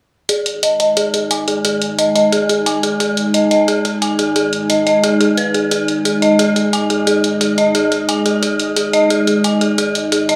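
Dark technical drum and bass, mechanical and tense, in which an eerie, inharmonic FM synth bell plays up-front arpeggios from 0.3 s, its chorus, dub echo and low-pass filter sweep giving it a detuned, unsettled edge, while a layered electronic hi-hat drives the drums throughout. From 0.9 s a deep, moody ambient pad sustains chords up front, its detuned sawtooth body and sub octave softened by chorus and reverb into a full, mellow bed. A moderate plate reverb lends the studio ambience a sense of space, and the hi-hat carries the character of a large room.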